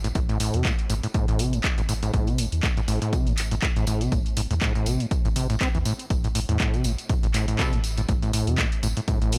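From the first moment, a squelchy, distorted acid bass riff sits up front over a round, deep analog bass that pumps against the beat. The track is a hypnotic, driving acid house cut at 121 BPM in A minor, with a 16th-note swing and tuning set slightly low at A4 = 436 Hz. Handclaps and hi-hat from a tape-toned analog drum machine run from the start, a punchy electronic kick joins at 0.2 s, and a jingly tambourine rattles in the background. The whole passage rides a single A minor chord, keeping the focus on the resonant, gritty riff and its filter sweep. At 7.6 s a brief, nasal, band-passed chord stab flashes by, colored with phaser, analog chorus and tape echo. The sound is dry and raw, a short cut from a longer piece.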